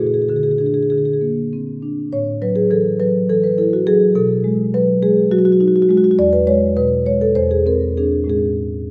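Uneven beats in 7/8 give this contemporary classical piece for solo marimba a lilting, off-kilter pulse, and the rubato phrasing lets the time stretch and give in a playful, warm mood. The marimba, played with soft mallets, carries the whole piece alone, ranging from a deep low register up into its upper bars. Its rosewood tone is woody, mellow and round, and it sits up front in the sound. A moderate recital hall reverb adds a natural bloom of space around each note. The harmony drifts through rich colours, from Bb9 at the start to an E chord at 6.2 seconds, an Eaug7 and a closing Amaj7. The short passage runs 8.9 seconds and is cut from a longer piece.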